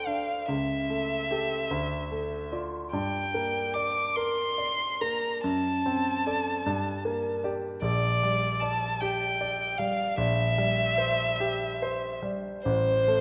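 Tender and serene, this short excerpt from a longer classical piece is a romantic duo for violin and grand piano, moving slowly at 49 BPM in 6/8 with uneven beats and generous rubato. A single bowed violin carries the melody between C5 and D6, its tone rich and focused with a smooth top and singing vibrato, placed up front. The concert grand piano plays the accompaniment across a range from A1 to D5, sounding clear and polished with a deep bass, a present character and short sustain. Both instruments play throughout the 13.2 seconds, with harmony drifting from A7/C# through Dm, Gm and D7/F# toward C7/Bb before settling on a rootless F/A at 12.6 seconds. A moderate scoring-stage reverb of about 1.5 seconds surrounds the pair, lending the performance a gentle sense of space.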